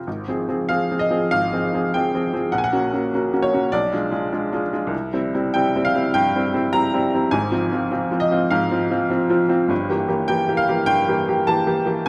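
Close, detailed microphones place a clear, woody upright piano up front, with its action noise audible and a moderate recital-hall reverb around it. This brooding, stormy romantic character piece for solo piano moves at about 100 BPM in 4/4 with a free rubato feel, ranging from G1 to Bb5. The roughly 12-second excerpt is cut from a longer piece, and its dark harmony turns from Fm/Ab through Gb/Bb and a Bdim7 to C, then returns to Fm/Ab before settling on Edim/G.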